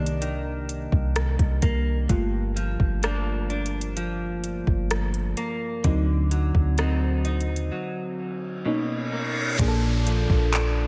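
Light reverb and a digital ambience give this short cut from a longer contemporary R&B piece a dreamy, smooth sheen. A mellow FM electric piano, round and dark with a faint noise layer, carries a solo over a chorus-and-phaser shimmer, moving through Cm9, Gm7 and D7b9 before settling on Bmaj9 and Bbmaj7. A clean, direct-recorded electric guitar, picked and compressed, spins arpeggios through lush chorus and tape echo. Underneath, a soft 808-style bass adds deep, sine-like notes with a fast attack. An up-front electronic drum kit with a soft kick, metallic hats, handclaps and rim clicks has a tape-flavoured polish. A break arrives at 7.7 seconds, and a reverse cymbal and downlifter enter at 8.5 seconds to lead into a new section at 9.6 seconds.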